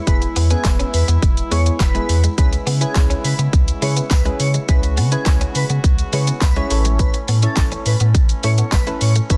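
This short cut from a longer dance-pop track has a dense, heavily limited modern sound set in a digital ambience, with the drums sitting up front. At 104 BPM in a straight 4/4, it feels euphoric and summery, moving from E to C#m7 at 2.4 seconds and on to A at 6.7 seconds. An electronic, layered pop kit drives it with a punchy kick, fat snare, handclaps, shaker and hi-hat, while a deep, round sine sub bass pumps against the kick and a bright, jingly tambourine shimmers in the background from 0.6 seconds. Soft, triangle-toned electric-piano-like synth keys with chorus carry the accompaniment, and a clean, direct-recorded electric guitar plays a compressed, picked riff with a subtle chorus. Above them an airy, dreamy detuned lead sings the melody with vibrato, a noise layer, phaser and digital delay. Behind it all, a distant, roomy brass ensemble holds mellow sustained chords, pumping in time with the kick.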